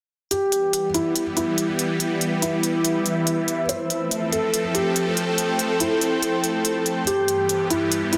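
A dense, heavily limited modern master sits inside a moderate plate reverb, giving this short cut from a longer heavy wobble dubstep track a crowded, chaotic weight. At 142 BPM in 4/4 with a half-time feel in E phrygian, it opens at 0.3 seconds with a felt-muted upright piano carrying the melody: soft, dark and intimate, with thick felt, audible action noise and a tape echo that lends a vintage haze. Crisp electronic hi-hats enter alongside it, layered, tape-tinged and up front in studio reverb. From 0.6 seconds a lush, bright supersaw pad holds sustained chords of detuned sawtooth unison, its slow attack and phaser carving a moving notch through the sound. A cloudy granular pad of blurred sine tones drifts in at 1.7 seconds, evolving and mellow, with a long release bathed in its own reverb, as the harmony moves from Em to F and settles on Em/G.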